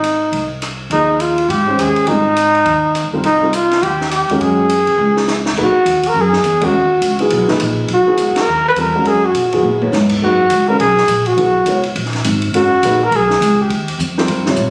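Modal jazz with a searching, spiritual mood moves at a brisk swing in this short excerpt from a longer piece. A breathy, up-front trumpet carries the solo melody in a jazz style, with light vibrato, scooped notes and a smooth top. Beneath it, a woody, pizzicato upright bass with steel strings anchors the low register, while a compact cocktail drum kit sounds dry and natural, with dark cymbals, a high-tuned snare and a tight kick. A mellow baby grand piano with short sustain joins the accompaniment at 0.9 s, voicing lush ninth chords. A drum fill leads into a new section at 5.6 s, where the harmony shifts to a fresh tonal center and the band lands a pair of accents. The sound suggests a phone capturing the group in the room, wrapped in a moderate studio reverb.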